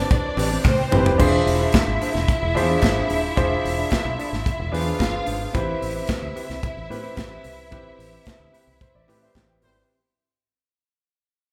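A wet, roomy studio sound captures a band playing live together in this sultry, glamorous disco excerpt at 110 BPM in A minor, moving from Am9 to E7b9b13 at 1.2 seconds and back at 5.5 seconds while the passage fades out from 1.2 seconds onward. A tight, polished funk drum kit sits up front with a drum fill at 0.6 seconds, over round, punchy fingered bass, an intimate grand piano with audible action noise, a dark, clean electric guitar in the background, lush bowed strings carrying a distant second line, and very quiet crisp group handclaps. A band accent arrives at 7.7 seconds, the piano adds a fill, and faint horn section stabs slip in at 9.2 seconds.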